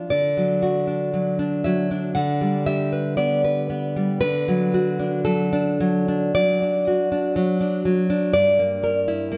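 Melancholic and wistful, this romantic piece for solo classical guitar unfolds in D major at a slow, rubato 52-62 BPM in 4/4. The nylon-string guitar carries everything alone from 0.0 to 9.4 seconds, fingerpicked with a bright, full-bodied tone from fresh strings, sitting up front and ranging from G2 to F#5. The harmony rests on D, moves to G over a D bass at 2.2 seconds, returns to D, and arrives at Em7b5 over G at 8.3 seconds. A moderate recital hall reverb surrounds the instrument, and the overall production is dark and warm. The passage is cut from a longer piece, ending on that chord.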